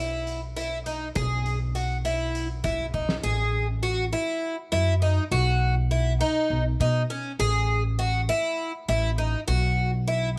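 A straight 7/8 pulse drives this intricate, bright progressive instrumental fragment, where a shimmering, octave-doubled twelve-string acoustic guitar picks up-front arpeggios over a woody pizzicato upright bass, while an oversized, low-tuned drum kit with a fat snare, punchy kick and gritty, saturated tone in a stone room plays only from 0.3 to 3.2 seconds, capped by a fill at 2.9 seconds.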